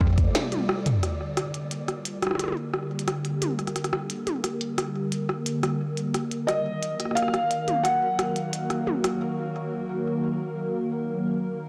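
IDM fragment with an eerie, cerebral mood, where a hollow, flute-like pad with ensemble chorus and 12-bit grit holds chords throughout and carries a filter sweep from 1.0 s, a glitchy kit of clicky hats, rim clicks, a tiny soft-clipped snare and toms runs from 0.2 to 9.2 s with a fill at the opening, a grainy, flickering texture glints in the background at the start, a felt-muted upright piano with audible action noise and delay touches in briefly at the very start and returns with a boxy melody from 6.5 s, and the drums and piano drop out for a break at 9.2 s, all set in a huge ambient reverb and a blown-out, overdriven sound.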